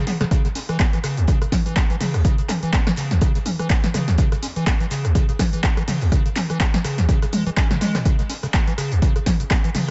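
Acid house at 124 BPM in C# minor pentatonic with a 16th-note swing, this trippy, driving cut sets a squelchy, resonant square-wave acid bass riff with subtle chorus, sidechain pumping and dub echo against an overdriven, up-front electronic kick from 0.3 seconds, a punchy analog drum machine of handclaps, hi-hat, rim click, shaker, snare and toms treated with overdrive and dub echo, and a very quiet acoustic fusion kit of hi-hat and high-tuned snare, all in an echo-heavy, lightly reverberant mix dulled above 7.9 kHz, with a drum fill at 7.7 seconds.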